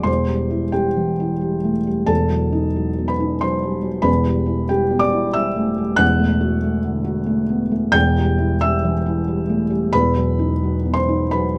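A felt-muted upright piano, dark and mellow with its action noise audible and placed up front in a moderate studio reverb, plays solo across this intimate, reflective excerpt of neoclassical minimalist piano in E minor at 91 BPM in a rubato 3/4, spanning E1 to G6 as chords shift over an E bass from C/E through B/E, Em, D/E and Emadd11 before returning to B/E at 9.9 seconds.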